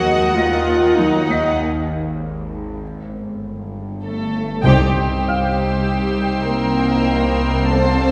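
In a straight 5/4 at 98 BPM, tuned slightly sharp to A4 = 445 Hz, this ominous, eerie suspense cue is cut from a longer film score and moves from Ebmadd9 through a chordless break at 1.6 seconds to Gsus2, then lands on C minor. A rich violin section carries the melody sul tasto with soft attacks and light vibrato, shadowed by a darker chamber violin section on a second line, while a floating, pure viola section supplies accompaniment. Dusky cellos and woody double basses anchor the low end, joined by a tense, detuned sawtooth drone with a noise layer, phaser, vibrato and its own reverb, sitting in the background. Brilliant, short-sustained grand piano figures glint high in the texture, and at 4.6 seconds a band accent brings close, dry timpani struck with medium mallets, along with a soft, high violin texture that shimmers above the ensemble to the close. The whole sounds heard from further back on a wet scoring stage, giving the intimate bowed strings a haunting distance.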